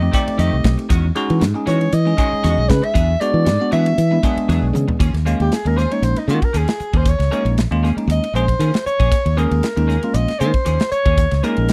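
Funky and nocturnal, this short cut from a longer electric jazz fusion piece moves at 117 BPM in 4/4 with a light sixteenth-note swing, set in Eb dorian and shifting through chords such as F9, Emaj13 and E9 before settling on Eb9sus4. A mellow soprano saxophone carries the melody with vibrato, soft attacks and scooped notes, its slapback echo joined by a distant, roomy quality, and it moves into a jazz-style solo from 5.0 seconds after a drum fill at 4.7. Beneath it, a bell-like tine electric piano supplies clean, bright accompaniment colored by phaser, while a semi-hollow electric guitar adds picked, compressed stabs treated with analog chorus, sitting lower in the blend than the other parts. A fingered electric bass anchors the low end with a direct, up-front tone, and an acoustic studio kit with a punchy kick, medium-tuned snare, hi-hat, ride and toms sounds airy and polished. The whole is a dry, close recording in a 1970s studio manner, with little reverb.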